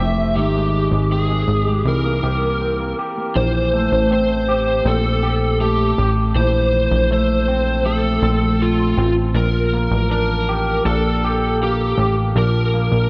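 Dream pop in an ethereal, dreamy mood, taken from a longer piece: an up-front overdriven slide guitar carries the melody through ensemble chorus and diffuse ambient delay, an electric guitar with an envelope filter spins twangy, compressed arpeggios in lush chorus and its own ambient delay, and a punchy, wave-folded analog bass plucks beneath, with the whole mix soaked in a wet plate reverb.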